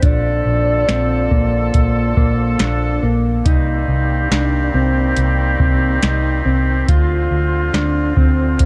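A hollow, woody synth lead with chorus and delay sings a soft melody that stops at 3.0 s, floating over a classical-style woodwind section holding smooth sustained chords, a dark, clean fingered electric guitar arpeggiating through subtle chorus and delay, a round, foam-muted picked bass, and an up-front analog rhythm box with deep kick, tonal snare and metallic hats, in this ethereal, dreamy dream pop passage at 70 BPM in Bb major that moves from Bbmaj7 to Cm7 to Dm7 under light reverb.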